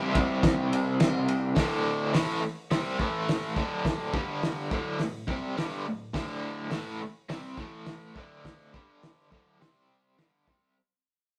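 Garage rock with a swaggering, raw mood, this cut from a longer piece pairs a bright, double-tracked electric guitar riff, overdriven and shimmering with tremolo, with a cloth-damped, thuddy acoustic drum kit with dark cymbals, a fat snare and a tight kick. The guitar opens on C before moving through D5, A5 and G5 and landing on Gsus4, with the drums entering at 0.2 s. Both parts sit up front in a rough rehearsal-room recording with moderate reverb, and the passage fades out from 1.6 s onward.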